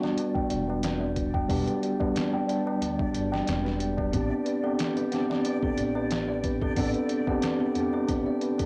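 Trip hop at 91 BPM in E minor with a smoky, hypnotic swing, where a mellow tine electric piano with harmonic tremolo and tape echo carries the Em7 to Am11 chords under a filter sweep, joined by a delicate, tinkling music box playing arpeggios, a muffled, overdriven sampler-style drum kit with a thumpy kick, a high-tuned ringing tabla in the background, a reversed, dreamy swelling texture from 0.3 seconds, and a woody, growly pizzicato upright bass from 0.5 to 6.9 seconds, all on a dry home cassette recording with lo-fi sampler grit on the keys and music box.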